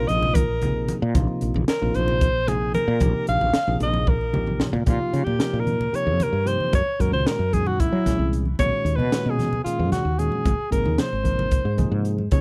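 A small room frames this nocturnal, slick electric jazz fusion in Bb minor, moving in 7/8 at 226 BPM counted in eighths and cut from a longer piece. Up front, a mellow alto saxophone with vibrato and a smooth top carries the solo melody beside a dark, growly, round fretless bass, while a clean tine electric piano, heard through its built-in speakers, plays the accompaniment. A saturated, punchy drum kit with a high-tuned snare and a pumping room sound plays a fill from 4.1 to 4.9 seconds as the harmony moves from Bb9sus4 to Bbsus2, and low-tuned, thick-skinned congas played with soft hands sit in the background.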